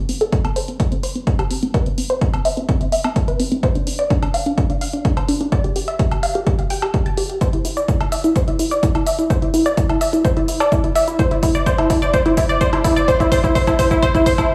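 A lush, detuned sawtooth pluck opens this driving, bittersweet progressive house passage at 127 BPM, playing arpeggios between C4 and A5 with a fast attack and quick decay, colored by cassette tape saturation, sidechain pumping and digital delay. Electronic hi-hat, woodblock and cabasa arrive almost at once, a layered, overdriven percussion bed sitting lower in the mix, and a punchy, overdriven electronic kick drum joins at 0.3 seconds, placed up front alongside the pluck. The whole passage is a build-up, with a filter sweep running across the pluck throughout. From 7.4 seconds a drum fill raises the tension toward the end of this section, cut from a longer piece. A moderate digital room reverb gives the studio sound a sense of space.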